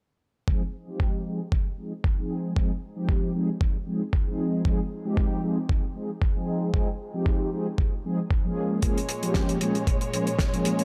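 Sensual and groovy, this nu-disco excerpt moves at 115 BPM in 4/4 with a light swing on the sixteenths, set in F minor. From 0.5 seconds, a mellow synth brass carries the accompaniment up front, its round, detuned sawtooth tone colored by chorus, phaser, sidechain pumping and dub echo while a filter sweep runs across the whole passage. Beneath it, a gritty, overdriven electronic kick drum thumps up front with a compressed, sampler-style punch. At 8.8 seconds, a damped 70s drum kit adds hi-hat and a fat, dry snare with a rolled-off top, and a dark studio string section enters with lush, woody bowed chords and vibrato, shaped by sidechain pumping. The harmony sits on Fm7 before shifting to Bbm7 near the end. The echo-heavy mix has light reverb and a small room ambience, and the brass and strings play on to 10.8 seconds.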